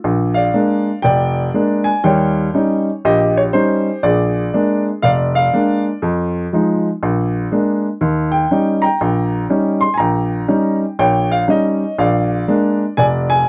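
Relaxed and playful, this short solo jazz passage is cut from a longer piece and rides a lilting swing feel in 4/4. A lone upright piano carries everything, its woody, up-front tone spanning from F1 up to C6. The harmony moves through a bluesy dominant-seventh cycle, starting on Bb7, shifting to Eb7, returning home, and touching Fm7 and Bb7 before moving through Eb7 to land on Bb7 at 12.0 seconds. The sound is dry and close, like a 1970s studio session with the piano sitting almost in the listener's lap, and the clip ends at 13.5 seconds.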